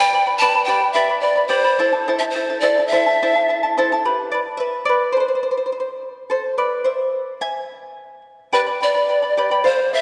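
Andean folk at 107 BPM in a straight 2/4, wistful and earthy, in which a breathy, up-front pan flute with woody chiff, vibrato and a slightly unsteady tone carries the melody while a fingerpicked charango's shimmering double strings accompany throughout and take a solo from 4.0 to 8.5 seconds before the flute returns, all set in a lush concert-hall reverb in this short cut from a longer piece.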